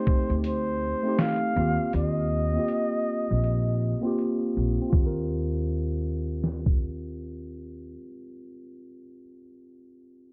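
Nostalgic and cosy, this swung lo-fi hip hop fragment in Eb major drifts at 80 BPM, with a whispered, breathy flugelhorn carrying a soft-edged jazz melody through a low-pass filter and tape echo until 4.2 s, over a clean, mellow tine electric piano that moves from F7 to Eb69 with a cassette-tape tint. A gritty, compressed, pitched-down sampler-style kit with a thumpy kick and medium-tuned snare sits up front, its kick briefly dropping out, while a woody, growly pizzicato upright bass plays until 7.9 s. The electric piano then carries on alone until 10.3 s, all within a dark production of vinyl crackle, a filter sweep and moderate studio reverb.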